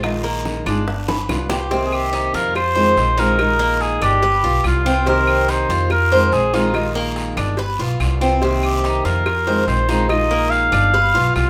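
Latin Cuban son and guajira in C minor at 143 BPM, this sultry, nostalgic passage from a longer piece sets a bright, fingerpicked nylon-string guitar and a metallic, double-strung Cuban tres picking arpeggios over an up-front pizzicato upright bass with steel strings. Round, low-tuned bongos and cowbell and woody claves sit further back, joined by a raspy guiro. After a short drum fill at 1.1 seconds, a mellow cor anglais enters at 1.9 seconds as a vintage, classical-style solo with light vibrato, carried over a repeating Bb7sus4, G7, Cm7 and Fm7 cycle in a moderate studio ambience.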